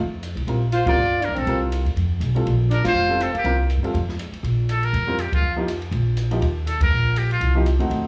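Small-group swing and bop jazz moves at a brisk 242 BPM in Bb major, with a relaxed, sophisticated mood in this short cut from a longer piece, heard as a live gig through the venue's PA with club reverb and small-room ambience. A muted trumpet carries the melody up front, its metal mute giving a buzzy, thin, whispered tone with a soft attack and a vintage, intimate character. A breathy alto saxophone with light vibrato adds a clear second line beneath it from 0.7 to 3.6 seconds. The upright bass is woody and growly, sitting prominently, while the baby grand piano comps with a natural, short-sustained sound. The drum kit of hi-hat, kick, ride and snare sounds dark and smooth, with a boomy kick and rolled-off top, and slapback echo colors the piano, trumpet and saxophone. Band accents punctuate the two passages through chords such as Gm7, Cm7 and F, with a brief break in the harmony before the second passage begins at 4.4 seconds.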